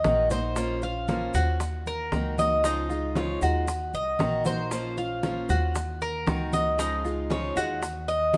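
A straight 4/4 pulse at 116 BPM drives this danceable, sultry Cuban son and guajira excerpt, which opens with a drum fill in its first 0.6 seconds; close, dry, round, low-tuned bongos sit over bright, damped congas and grainy maracas in the background, while a woody, thumpy pizzicato upright bass stands up front beside a metallic, double-strung Cuban tres playing arpeggios, and a boxy parlour steel-string guitar picks an accompaniment through an Ebm, Bbmadd9 and Dbadd9 cycle under light reverb.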